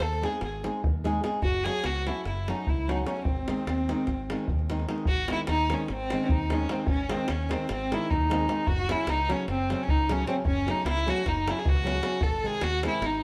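Fiery and restless, this Balkan wedding band folk excerpt in 9/8 pushes forward as it speeds up, moving between G# and F#m chords in a stone room with a moderate reverb that places the players together live. A rich violin carries the melody up front, played close and intimate with light vibrato, a soft attack and an airy sul tasto bow, while a dark, classical-style clarinet traces a second line in the background. Beneath them, a fingerpicked flamenco guitar adds acoustic accompaniment with audible finger squeak, a bright, punchy electric bass holds the low end, and a tight, compressed, saturated davul drives the percussion.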